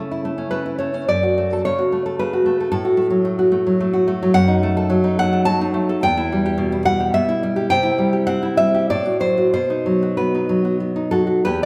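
A fingerpicked nylon-string guitar, full-bodied and up front with fresh strings and audible finger squeak, plays a tender, nostalgic romantic solo in 3/4 at a rubato 89-114 BPM, spanning E2 to A5 through chords from A/C# and F#m to Em, C and a closing B, set in a wet recital hall reverb in this short excerpt cut from a longer piece.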